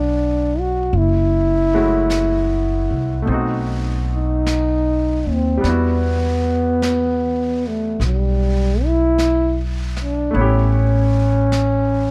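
A jazz ballad at a slow 51 BPM in 4/4, this short excerpt swings its eighth notes gently and carries an intimate, late-night mood. A breathy trombone sings the melody up front, its mellow, whispered tone and soft attack giving the line a confiding quality. Beneath it, a clear baby grand piano with short sustain supplies the accompaniment, while a woody pizzicato upright bass sits close in the mix. A jazz brush drum kit enters at 0.9 seconds, adding an airy, polished texture from brushed snare and hi-hat far in the background. The harmony moves from Gmaj9 through F#m7, B7b9 and Em9 before landing on A7, and the dark production with little reverb keeps the whole performance close and personal.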